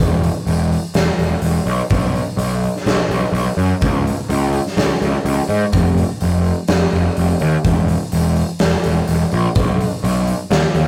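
A growly, overdriven fuzz bass, picked and up front, drives this brooding, angsty quiet-loud alternative rock excerpt in a straight 4/4, joined from 0.2 seconds by a big acoustic rock kit with a punchy kick, medium-tuned snare and hi-hat in a bright stone room, all caught in a rough rehearsal-room recording with light reverb and warm saturation.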